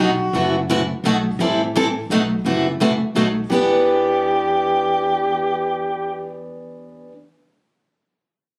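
A soprano saxophone, guitar and upright bass open together in this brisk, bittersweet gypsy-jazz excerpt in E minor, swinging at 171 BPM in 3/4, the bright picked steel-string guitar sitting up front with audible finger squeak while the woody, thumpy pizzicato bass on gut strings stays low beneath it. The soprano sax plays a second line with a soft attack, smooth top and vibrato. It sounds briefly at the start and returns at 3.5 seconds, just as the harmony, having circled between B7, F#m7b5 and Am7, settles on Em7. A phone recording in the room, it carries a compressed, club-reverb ambience that gives the virtuosic trio a live feel.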